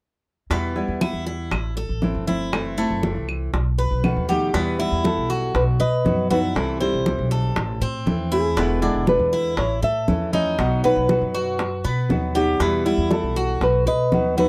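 A dry, close 1970s-style studio sound with light reverb frames this sultry, danceable Latin excerpt of Cuban son and guajira at 119 BPM in E harmonic minor, where a fingerpicked flamenco guitar and a metallic, double-strung Cuban tres picking arpeggios ride over a thumpy, dark gut-string upright bass up front, round low-tuned bongos, bright hard-handed congas in the background and woody claves that stop at 4.3 s, when a full-bodied, thumb-plucked nylon-string guitar takes up the melody.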